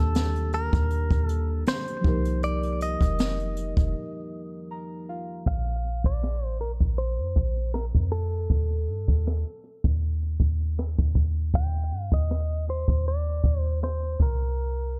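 A small room and a low-pass filter give this dark, warm contemporary R&B excerpt its close, rounded sound, with a dreamy, smooth mood at 79 BPM in Bb major and a light swing on the sixteenths. A bright, twangy clean electric guitar, recorded direct and compressed, carries the melody through the full 15.0 seconds, its picked notes trailed by a digital delay. Muted, felt-like synth keys with chorus lay down soft, full-bodied chords over Ebmaj7#11 and F9sus4, adding a short fill before they stop at 5.5 seconds. Underneath, a deep, sine-like 808-style bass sits up front with a fast attack and mellow decay, alongside an acoustic brush kit with a high-tuned snare, boomy kick, rim clicks and hi-hat. The groove breaks briefly before the second section opens on a Bb5 chord, passes through a chordless stretch, and settles on a rootless Fsus4 near the end.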